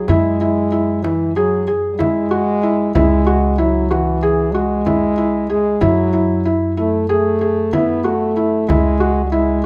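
Set in an uneven 9/8 metre with a straight feel, this contemporary chamber piece moves with a hypnotic, restless pulse. A felt-muted upright piano sits up front with soft, intimate arpeggios, while a mellow French horn with a smooth top carries a classical-style second line close beside it. An upright bass plays pizzicato underneath with a woody, growly tone from its steel strings. From 0.1 s a frame drum, struck with soft hands, keeps to the background until it stops at 9.0 s. The harmony circles through F#sus2, C#m and F#m9, and light reverb gives the ensemble a gentle sense of space in this short excerpt cut from a longer piece.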